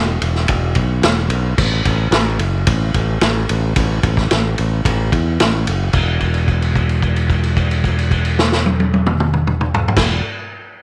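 A straight 4/4 groove at 110 BPM drives this short blues rock and southern rock cut, taken from a longer piece and tuned to A4 = 439 Hz. The mood is swaggering and raunchy, carried by a power-trio rhythm section of electric bass and drum kit, both sitting up front. The fingered bass, starting at 0.0 s and ranging from E1 to E2, has a bright, growly, punchy tone heard direct. The vintage acoustic kit enters at 0.2 s with kick, snare, toms, ride and crash, its sound gritty and saturated, with dark cymbals, a tight kick, a medium-tuned snare and a rolled-off top in a studio room. At 5.9 s the music moves into a new section marked by a held note, and a light reverb colours the whole mix.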